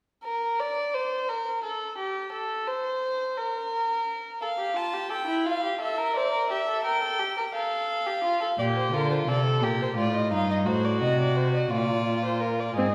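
A classical, baroque-style fugue for string quartet, joyful and stately, cut from a longer piece, opens with a dark, distant violin second line alone at 0.2 s, is joined by a violin melody with a nasal, gut-string period tone at 4.4 s and a reedy cello bass at 8.6 s, while the smooth-topped viola sounds only briefly at 12.8 s, all within the wet reverb of a church or concert hall.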